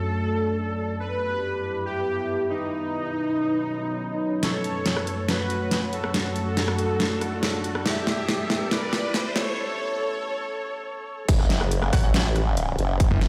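A menacing, heavy half-time wobble dubstep cut at 140 BPM in F# phrygian opens with a smooth, detuned supersaw melody carrying tape echo over a morphing wavetable pad and a nostalgic, lo-fi warbling pad in the background, both chorused and pumping against the sidechain while a filter sweeps the ambient layer. Overdriven electronic drums with a deep snare, hi-hat, rim clicks and crash enter at 4.4 seconds to start a build-up, joined by a very quiet riser at 6.9 seconds, before a short break gives way to the drop at 11.3 seconds. There, a punchy overdriven kick and a chorused, formant-filtered wobble bass hit up front, with bright, gritty orchestra-hit stabs arriving behind them at 11.9 seconds, and a snarling, distorted saw bass takes over at 13.1 seconds, all ringing in a stone-like hall on a big sound system.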